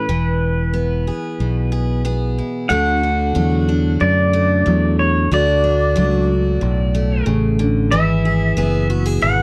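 A twangy, compressed pedal steel guitar carries the melody with fingerpicked slide lines, volume swells and a slapback echo in this nostalgic, sunny stretch of honky-tonk and classic country at 92 BPM, cut from a longer piece. Beneath it, a bright, full-bodied dreadnought acoustic with fresh strings picks along while a round, dark fingered electric bass sits up front, and the harmony moves from E to D at 2.7 seconds and back to E at 7.9 seconds. The sound is dry and close, like a 1970s studio, with little reverb and tuning set slightly below standard pitch.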